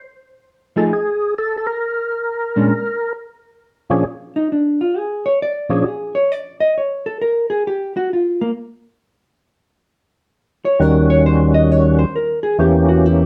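Swung eighth notes in 4/4 give this greasy, soulful jazz fragment a loose, rolling feel. From 0.8 seconds, an overdriven tonewheel organ carries the melody up front with a gritty, percussive bite, its tone thickened by chorus vibrato and a slow rotary speaker. Alongside it, a clean, fingered hollow-body electric guitar plays accompaniment, sitting equally forward with a dark voice. At 3.6 seconds the guitar moves into a solo that runs to the end, while the organ carries on until 5.8 seconds, drops away, and then returns at 10.8 seconds. The harmony leans on bluesy seventh-sharp-nine chords, passes through a stretch with the chords dropping out, and closes on a diminished chord. A moderate studio reverb and a dark, warm production wrap the two instruments in a snug space.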